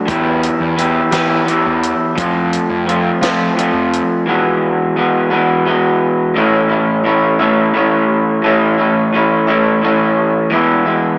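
Carefree yet wistful, this short indie rock cut from a longer piece sways in a straight 6/8, built around a twangy, slightly broken-up electric guitar riff played through a small old amp that sits up front for the full 11.2 seconds. A dark, round fuzz bass with overdrive and a dry compact cocktail kit, with its high-tuned snare, tight kick and hi-hat, join at 0.1 s and drop out around 4 seconds, leaving the picked guitar alone as the chords move from Em and F to Eadd9, then settle on A at 6.3 s before turning to E. The whole piece carries a small-speaker character in a lush hall reverb.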